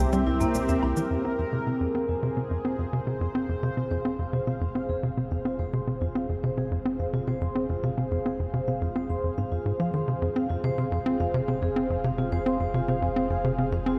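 A detuned, sweeping pad holds sustained chords over a punchy, up-front sequencer bass riff with tape echo, ringing vibraphone arpeggios and a round analog bass whose filter sweeps over a C7 chord, with brief cabasa and woodblock from 0.1 to 1.1 seconds, before the music settles on F minor at 1.1 seconds as the vibraphone and round analog bass fade in, giving this cosmic, expansive piece of ambient sequencer-driven space music at 107 BPM a vast, echoing cathedral sheen.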